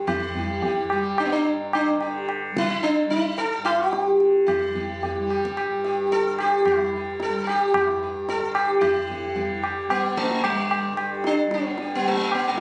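Radiant and meditative, this Hindustani classical piece in raga bhupali on G moves at 110 BPM in a straight 4/4, gradually speeding up, with a new section arriving at 8.8 seconds. An up-front, plectrum-plucked sitar carries the melody with a buzzing tone and shimmering sympathetic strings, set over a softly plucked tanpura drone that hums low and warm, while a high-tuned, close and dry tabla with a short ring joins at 0.1 seconds. Caught on a phone in a modest small room and cut from a longer performance, the sound is compressed and bathed in club reverb.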